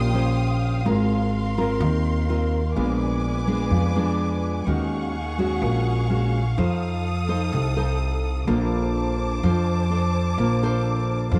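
Relaxed and sunny, this 11.4-second bossa nova excerpt moves at 126 BPM in Bb major, with a full-bodied, fingerpicked nylon-string guitar and a woody pizzicato upright bass sitting up front through chords such as Eb13, Bb7b9 and Ebm11 before settling on Bbmaj9. Alongside them, a lush symphonic string section holds sustained chords high above with vibrato and a soft attack, all set in light studio reverb.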